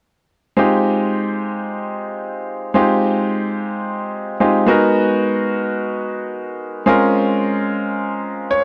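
Jazz in free time and F minor, with a slick, nocturnal mood. A brilliant concert grand piano with deep bass sits up front from 0.6 seconds, voicing Fm9, Abm9 and Bbm9 chords in its middle register before a short fill at 8.2 seconds closes this brief cut from a longer piece. The sound is dry and close in a 1970s studio style, with a touch of small-room reverb.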